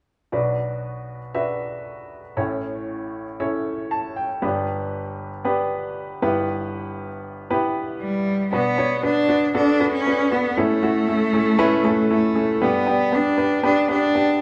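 A bowed cello with a smooth, vibrato-rich tone enters at 8.0 seconds to carry the melody over a clear, woody upright piano whose short-sustained chords move through Bm, A, G and Em/G, with a brief piano fill at 3.7 seconds, giving this bittersweet, driving pop excerpt in B minor at 117 BPM a live, one-room feel bathed in lush studio reverb.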